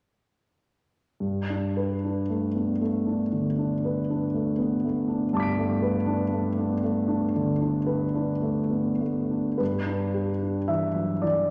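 Impressionist solo classical piano, dreamy and hazy, unfolds in a free rubato 4/4 in this short passage cut from a longer piece. A clear, polished concert grand sits up front and intimate, spanning deep bass at G2 up to D7, with long sustain and audible action noise, all bathed in the generous wash of a wet concert hall. The piano enters at 1.2 s on a Gadd9 and shifts to a new section at 9.6 s, settling onto a G6 chord.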